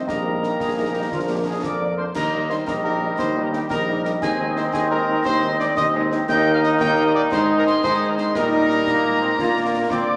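A proud, spirited wind-band march in 6/8 and Eb major at 116 BPM opens with a mellow cornet carrying the melody over a dark, distant woodwind line, clear sustained trombone chords and a soft-attacked euphonium that drops out at 1.9 s. A pure, tongued piccolo with expressive vibrato rides high above, while a warm vintage tuba anchors the bass and a French horn section fills in the background from 0.3 s. Close, dry concert snare, bass drum and bright clash cymbals accompany this short excerpt of a longer piece, and the ensemble sits in a large studio reverb.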